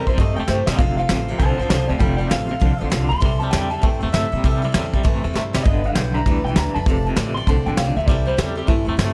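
A rowdy, retro rockabilly passage at 198 BPM in C major, with a swung feel, features a bright, slightly broken-up electric guitar through a small old amp carrying the melody in plate reverb and tape echo. It plays over a full-bodied, fresh-stringed picked acoustic, a clean, compressed, twangy electric guitar riffing low with tremolo, and a woody, thumpy pizzicato upright bass on gut strings. A soft brush kit with a fat snare and punchy kick sits up front in a studio room and drops in fills at 0.5 and 5.3 seconds, while the chords move from C6 through F6 and G6 and back to C6.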